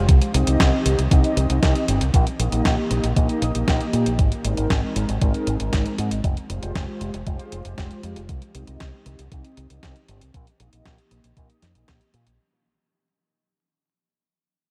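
Danceable and playful, this italo disco excerpt moves at 117 BPM in a straight 4/4. A thumpy electronic kick and a sampler-style drum machine with hi-hat and a fat snare drive it, while a bright, punchy fingered electric bass runs through an envelope filter with tape echo. Round, detuned synth brass stabs with chorus, vibrato and a filter sweep ride over a Cm, Eb/Bb, Abadd9, Fmadd9 progression, all set in a dreamy cathedral-reverb mix with vinyl crackle that fades out across its 12.4 seconds.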